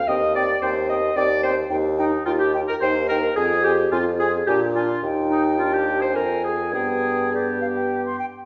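In a straight triple metre, this quick, dramatic and restless classical-period wind quintet passage, cut from a longer piece, sets a pure, tongued concert flute melody above a distant oboe second line with light vibrato, a mellow, punchy clarinet accompaniment, a roomy French horn in the background and an up-front, warm bassoon bass, all heard together in a wet recital hall reverb with a dull, softened top end.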